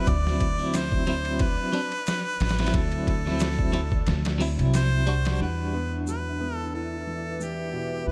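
A 90 BPM trip hop groove in 4/4 with a light 16th-note swing sits under a smoky, brooding E minor mood, built on a gritty, pitched-down boom bap kit with a thumpy kick that drops out at 4.1 seconds before the drums stop at 5.4. A clear harmonica with vibrato carries the melody through tape echo over a bright, scooped clean electric guitar with tremolo, while woody pizzicato upright bass, a warm tube shaker and a faint flickering grainy texture fill out the small, dark room. At 5.4 seconds the harmony shifts from D7 to Em7 as a felt-muted upright piano enters with lo-fi sampler grit, a filter sweep and audible action noise, and a detuned, chorused analog pad joins at 6.6 seconds in this short cut from a longer piece.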